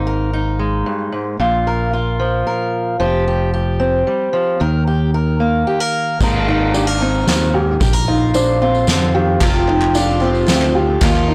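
Indie folk in 3/4 at 112 BPM, this hopeful, anthemic passage in Bb mixolydian is cut from a longer piece and builds its arrangement steadily over about eleven seconds. A fingerpicked acoustic archtop guitar sits up front from the start alongside a round, punchy fingered electric bass with transformer saturation, moving through Absus2, Bb5, Fsus2 and Eb5. At 6.2 seconds a soft-mallet drum kit arrives with a boomy kick, fat snare, crash and ride in a big room, joined by a jingly tambourine in the background, and from 6.5 seconds a dark, woody upright piano adds mellow arpeggios. At 9.4 seconds the fingerpicked guitar gives way to a boxy, shimmering, octave-doubled twelve-string acoustic guitar, and crisp, compressed group handclaps sit behind it over an Fsus2 chord. Light reverb surrounds the whole, and the recording itself is blown-out and overdriven, giving the build a gritty, saturated edge.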